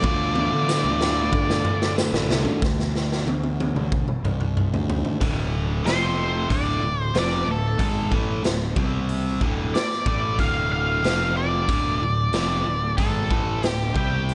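Brooding and swaggering, this short classic rock passage, cut from a longer piece, moves in a straight 4/4 over a Dm, Csus2, D5, F5 and C5 progression. Up front, a raw garage drum kit in a bright stone room drives the groove with a punchy kick, a medium-tuned snare, hi-hat and toms, its saturated, gritty sound pumping with the room and rolled off at the top, and fills run through the opening 5.2 seconds. A dark octave-fuzz lead guitar, also up front, carries the melody briefly at the start and returns at 5.9 seconds to hold it to the end. Two bright picked guitars, one overdriven and one tight and distorted, sit in the background playing the riff. Beneath them, a fuzz picked electric bass with a round, direct-and-amped overdriven tone anchors the low end, while a jingly tambourine appears for just a moment near the opening. The mix is dry and dark-edged, with little reverb and nothing above 10.4 kHz.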